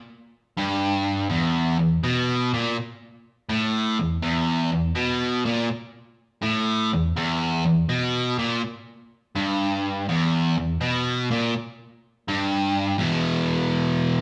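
A double-tracked, overdriven electric guitar sits up front in this swaggering, driving rock excerpt, its picked tone warm and electric as it takes the solo. The guitar comes in at 0.6 seconds and plays until 14.2 seconds, staying in a low register from E2 to E3. The tempo is a mid-paced 82 BPM in 4/4, with a swung eighth-note feel that gives the groove its strut. The harmony rests on an E5 power chord, and the tuning sits just above standard at A4 = 441 Hz. The sound has the immediacy of a band playing live in one room, wrapped in a wet stone-room reverb with a decay of 1.1 seconds. The piece is cut from a longer performance, and a new section begins at 13.0 seconds.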